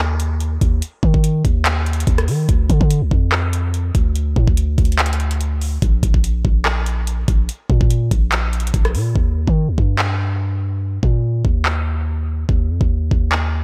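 A dry, up-front mix carries this brooding, melancholic half-time trap cut, where a deep, sine-toned 808-style bass with a fast attack and long decay sits beside a layered electronic garage kit of knocking kick, metallic hi-hats, handclaps and rim clicks re-recorded in a small room, until the hats drop out at 9.2 seconds and the kick, claps and rims carry on under the bass for the final stretch.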